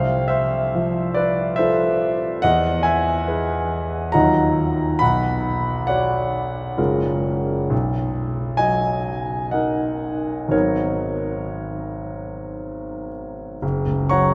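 The rhythm moves freely in a rubato 3/4, drifting between 57 and 71 BPM in this short excerpt of a classical, impressionist solo piano piece. A clear concert grand piano plays alone from 0.0 to 14.3 seconds, spanning F#1 to C#6, with a deep bass, natural tone and long sustain placed up front. The harmony glides through lush extended chords, from Fmaj7/C through Emaj7, D#madd9, Bmadd9, F#maj9 and Bmaj7, before G#m11 at 10.5 seconds gives way to F# at 13.6 seconds. The mood is hazy and dreamy, heightened by a vast, echoing cathedral reverb with a 6.1-second decay that blurs each sonority into the next. Tuned slightly low at A4 = 439 Hz, the recording feels suspended and dreamy.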